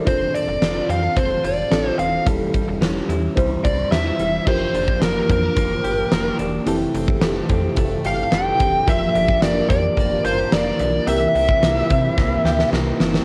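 1980s-style pop at 109 BPM with a nostalgic, romantic mood, cut from a longer piece and heard through a home cassette recording with moderate spring reverb. A dark, overdriven lead guitar carries the melody up front over a huge arena drum kit with a fat snare and bright cymbals. A snappy, metallic FM bass holds down the low end, while a lush, dreamy FM electric piano with chorus and phaser and a clean, direct-recorded guitar riff sit in the background. An evolving, resonant pad enters at 4.5 seconds with sustained chords, and a drum fill closes the passage at 12.2 seconds.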